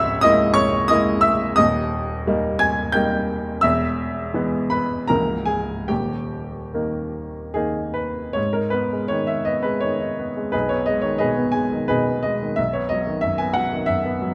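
In a flexible, rubato 3/4 that drifts between 70 and 92 BPM, this romantic classical character piece for solo piano unfolds in G# minor with a stormy yet bittersweet mood, cut from a longer work. A clear, natural-sounding baby grand with short sustain sits up front, spanning C#1 to G#6 and captured by close, detailed microphones within a moderate recital hall reverb. Its restless opening harmonies settle onto the G# minor home chord at 8.4 seconds before moving toward B major by the close at 14.3 seconds.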